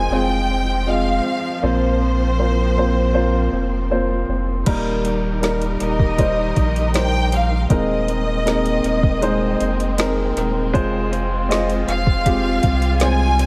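A vibrato-rich symphonic violin section carries the melody from the start alongside a dark, mellow baby grand piano, both touched with analog delay, while distant bowed studio strings hold sustained chords in the background and a deep, round sub bass sits up front. At 4.7 s a smooth R&B drum kit joins with a soft kick, woody snare and metallic hats, lifting this tender, hopeful pop ballad fragment. The echo-heavy mix sits in light reverb and small room ambience.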